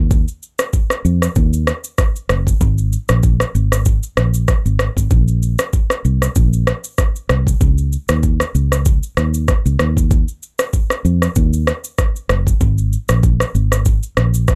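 A dark, round fingered electric bass with foam-muted tone and tube saturation sits up front from the start, moving through a low register against an electronic afro-pop drum kit whose knocking kick, rim click and shaker carry a tape-warm, small-room character. This breezy, romantic afrobeats groove moves at 96 BPM in 4/4 with a light 16th-note swing, both parts running together for the length of this roughly 14.6-second cut from a longer piece. The dry, gritty hardware recording adds transformer saturation and keeps the pair close.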